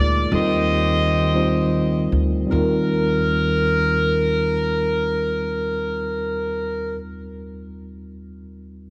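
A slow gospel passage in a straight 6/8, soulful and reverent, cut from a longer piece. A clear, up-front saxophone section carries the melody as an ensemble in a pop style, its sound colored by cassette tape. Beneath it, a mellow tine electric piano supplies clean, direct accompaniment that spans from the low register up into the middle, with an Eb6/9 chord sounding near the start. A woody upright bass with steel strings holds down the low end, plucked, while the tempo slows over the opening 2.5 seconds. The horns and bass drop out at 7.0 seconds, leaving the electric piano alone until 8.9 seconds, all set in a small room with light reverb that gives the home cassette recording an intimate character.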